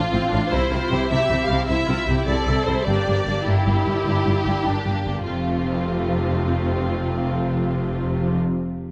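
An up-front violin section carries a smooth, even, lush melody with vibrato over a distant, intense second violin line, expressive viola accompaniment with portamento, and warm, soft-attack cellos and double basses in this triumphant, heroic passage of cinematic adventure scoring in 12/8, cut from a longer piece and set in a moderate scoring-stage reverb.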